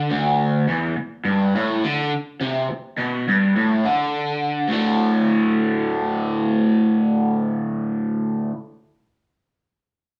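Swaggering and raw, this straight 104 BPM rock passage in 4/4, cut from a longer piece and tuned to A4 = 439 Hz, centres on a bright, picked, double-tracked electric garage guitar riff over a D5 chord, pushed up front with overdrive and a phaser across its D2 to D3 range from 0.0 to 8.5 s, shifting into a new section at 4.7 s while moderate studio reverb gives the feel of a band playing live in one room.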